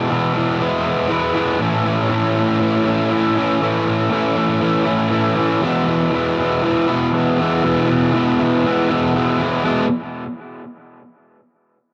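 Rock excerpt with a carefree, upbeat straight feel, where a lone double-tracked fuzz guitar, electric and picked, sits up front with a distorted, warm tone colored by cassette tape and analog delay, moving over E and A chords in a moderately reverberant home recording before it stops at 9.9 seconds.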